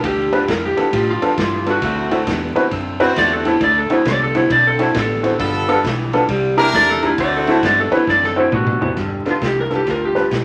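A crackling vinyl haze and wet studio ambience frame this soulful, rollicking electric blues shuffle at 134 BPM, where an up-front slide guitar, slightly broken-up and played with fingerpicks, carries the solo melody over a lo-fi riff from a guitar through a small old amp with vibrato, a round foam-muted fingered bass, a gritty garage drum kit with a punchy kick that plays a fill from 8.1 s, a woody, mellow upright piano, and jazz-style horn stabs between 1.8 and 8.0 s, moving through G9, D9 and C9 before landing on G7.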